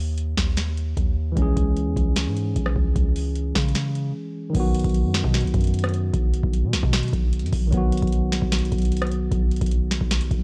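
Hard-hitting and melancholic, this half-time trap cut opens on a long, sine-deep 808-style bass with a fast attack and mellow decay, joined at 0.2 seconds by a booming analog drum machine whose deep kick, crisp snare, metallic hats, rim clicks and crashes sit up front with vintage 12-bit sampler grit and a small-room character. A clean tine electric piano, heard through built-in speakers, enters at 1.3 seconds, with a Dbm chord arriving at 1.4 seconds, and after a short break at 4.1 seconds the harmony moves to B for the second section. The mix is dry and gritty, with little reverb, and it is cut from a longer piece.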